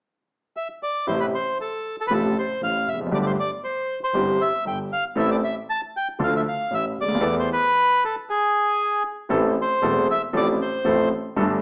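The rhythm moves at 117 BPM in 4/4 with a rubato feel, giving this tense, passionate tango in A minor a pulse that stretches and pulls. A reedy, close-miked bandoneon carries the melody up front from 0.6 s, full-bodied and dry, ranging from G#4 to A5. From 1.1 s a clear concert grand piano joins in accompaniment, natural in tone with a deep bass reaching down to E1. A single bowed double bass sits in the background with light vibrato and an intense edge, moving over the harmony of Am, F/A, Gsus2, C/G, Dm and Esus4 before a stop at 8.3 s leaves a moment of suspense. The whole sits in a wet club reverb, heard from further back in the room with a small-speaker quality, as this fragment of a longer piece returns to Am and F/A.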